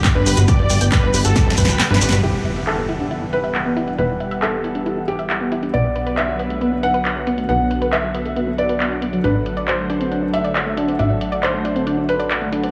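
Soaring and driving, this uplifting trance excerpt in E minor runs at 137 BPM in a straight 4/4, opening with a huge, euphoric supersaw lead carrying the melody through a dub echo, a punchy tape-warm kick, a grainy shekere in the background, and a filter sweep on the analog pluck before a drum fill and a brief kick dropout lead to a band accent at 2.1 seconds. From 2.2 seconds an electronic impact marks the shift to a soft, felt-muted upright piano playing a mellow second line with audible action noise and dub echo. Beneath it, a lush, thick pad with chorus and phaser, round bright pluck arpeggios, and a funky, evolving plucky analog bass run from the very start, all three pumping with sidechain. A punchy analog drum machine keeps handclaps, filtered hi-hats and snare going throughout in a light small-room reverb, as the chords move from Gadd9 to Emadd9, Bm and D/A.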